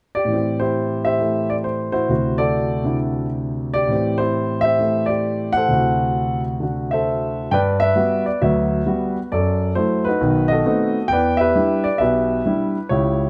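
Swinging eighth notes in 4/4 carry this relaxed, sophisticated solo jazz excerpt, cut from a longer piece, where a concert grand piano sits up front with an intimate, natural tone, deep bass, long sustain and audible action noise, alternating Am7 and D9 before a new passage at 7.5 seconds turns through Gmaj7, D13/F#, B7b9 and Em7, set in light reverb within a dark, warm production.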